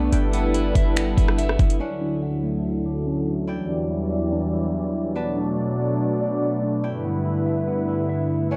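Atmospheric cloud-rap hip hop at 143 BPM in a half-time feel, spacious and melancholic, where a lush, detuned analog pad pumps and warbles under a low-pass filter across G6, Dmaj7, Em7 and Bm7 while a slightly broken-up electric guitar traces tape-echoed arpeggios, a crisp fingerpicked kora rings faintly in the background, and a boomy sine 808 bass with a smooth R&B kit of knocking kick, metallic hats, finger snaps and rim clicks dressed in 12-bit sampler grit sits up front until dropping out at 1.8 seconds, all in a dark digital ambience.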